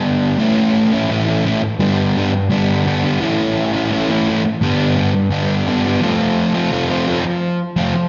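Drenched in a big arena sound with a lush digital stage reverb and a top end that rolls off above 7.5 kHz, this short rock excerpt is a swaggering, confident 85 BPM groove in A mixolydian. A crunchy, double-tracked electric guitar plays alone and up front from 0.0 to 8.1 seconds, picked with a slapback echo and ranging from G2 to F4. It moves through A, G, A, G and then F.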